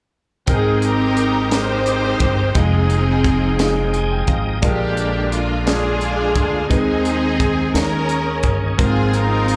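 Slow, jubilant gospel in 6/8 at 58 BPM in Ab major, heard as a live club gig through the venue's PA, where a lush, up-front bowed string section carries the melody with vibrato and slapback echo over a natural-sounding baby grand piano in the background, a bright, shouting tonewheel organ with key click, light overdrive and a slow rotary speaker holding sustained chords, a woody, growly pizzicato upright bass, and a crisp fusion drum kit with a punchy kick and high-tuned snare, while piano and organ both add fills from 3.6 to 4.6 seconds as the harmony moves from Abmaj9 to a closing Ab69.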